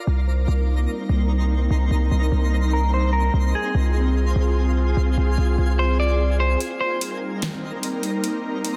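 Ethereal and spacious, this atmospheric cloud-rap fragment in a half-time feel floats on an airy, detuned pad with chorus and reverb, a twinkling granular shimmer, and a deep, mellow 808-style bass holding long sustained notes up front. A dark, clean, picked electric guitar carries the melody through tape echo while a filter sweep runs under the Cm7 and Fm/C chords. At 6.6 seconds the bass stops for a break as a smooth R&B drum kit enters with a fat snare and metallic hats, set in a dense, heavily limited modern master.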